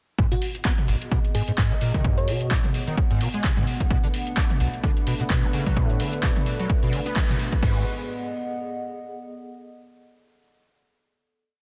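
An overdriven kick pounds four-on-the-floor from 0.2 seconds in this hypnotic, trippy acid house piece at 129 BPM, joined by a squelchy, resonant acid bass riff with accents and slides, a punchy analog drum machine of hats, claps, toms and crash, brief sparkling FM electric piano phrases with dub echo, a lo-fi warbling tape-like pad and, from 3.9 seconds, a smooth detuned analog pad pumping over Bm7, before a band accent at 7.2 seconds and a final G#m7 chord held by the tape pad to the close in a dense, heavily limited mix.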